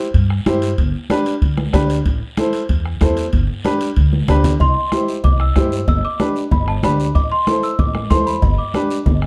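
Cumbia at a brisk 188 BPM in G major, danceable and sunny, this excerpt opens with a clear, boxy upright piano accompanying over a woody, thumpy gut-string upright bass played pizzicato up front. A soft-beater bombo, a raspy close guiro and ringing congas struck with hard hands fill out the percussion, while metal-shell timbales and cowbell sit distant in a large room in the background. After a drum fill at 4.1 seconds, a worn, slightly out-of-tune celesta enters at 4.6 seconds with a sweet, bell-like melody, its vintage, band-limited tone riding over the C, G and A minor changes in a dark mix with moderate studio reverb.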